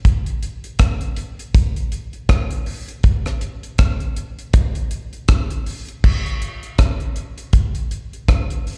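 A deep, dry acoustic reggae drum kit sits up front in this hypnotic, laid-back excerpt, its tight kick, rim click, hi-hat and crash cymbal carrying a swung sixteenth-note feel in 4/4, captured at a live gig through the venue's PA with a recital-hall ambience, and shifting into a new section at 6.0 seconds.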